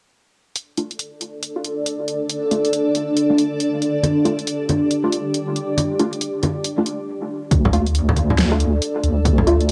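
A swung, half-time 4/4 groove at 138 BPM opens this dark, cavernous deep dubstep passage in D minor with an overdriven deep house kit of fat snare and hi-hat. Muted sawtooth dub chord stabs carrying phaser, chorus and dub echo under a filter sweep follow closely, and a blurred, evolving granular cloud pad soon settles in up front. Low-tuned, close and dry congas join at 4.0 seconds, and after a brief stop the punchy overdriven electronic kick and a deep, wobbling, detuned bass enter together at 7.5 seconds. Cassette tape grit and a short, wet studio reverb give the home-recorded sound a hazy, mellow character.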